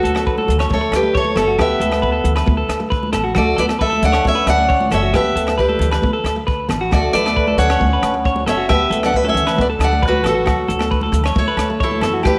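Highlife guitar band music, joyful and carefree at 135 BPM in D major, with a bright, fresh-stringed steel-string acoustic guitar picking the up-front melody over a D pedal, while a close-miked trombone with light vibrato carries a second line in the background and a twangy, compressed electric guitar plays clean arpeggios. A woody, thumpy pizzicato upright bass and a very quiet fingerpicked nylon-string guitar fill out the harmony, and the rhythm comes from a compact cocktail kit with a dry, punchy kick, hi-hat and rim click, plus distant, high-tuned congas struck with hard hands and ringing agogo bells. An echo-chamber reverb and small-room ambience surround this short excerpt cut from a longer piece.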